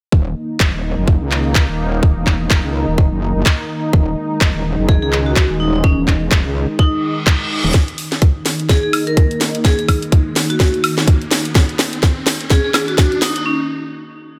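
Bass house in Eb minor at 126 BPM with a swung 16th-note feel, gritty and aggressive, where a tight, up-front kick and a garage kit of cracking snare, handclaps, hi-hat and woodblock drive a saturated, metallic FM wobble bass and a detuned, resonant sawtooth pad, both pumping with sidechain and chorus, until a bright vibraphone with hard mallets and dub echo arrives at 4.9 seconds, the bass drops out at 7.7 seconds after a reverse cymbal, and a build-up of riser, drum fill and filter sweep on the pad leads into a short break in this cut from a longer piece.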